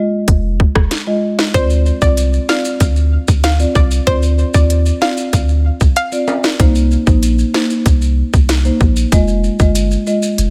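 Hypnotic and sultry, this dancehall excerpt moves at 95 BPM in a straight 4/4, set in C minor. A marimba with soft mallets opens alone, its rosewood bars woody and mellow. The punchy sub bass and an overdriven, electronic island pop drum kit arrive at 0.3 seconds, with the kit's tight kick, sharp snare and smooth hats sitting up front beside the deep, sine-toned bass and its pitch-drop attack. At 1.5 seconds an analog pluck carries the melody between C5 and F5, its round, full-bodied sawtooth tone shaped by a filter pluck, a noise layer, chorus and delay, while maracas and timbales add acoustic colour from a live room. The pluck drops out at 6.4 seconds, leaving marimba, bass, drums and hand percussion, as the harmony moves from Fm7 through Csus24 and Cm7 back to Fm7. The mix is dry, with a faint mains hum beneath it.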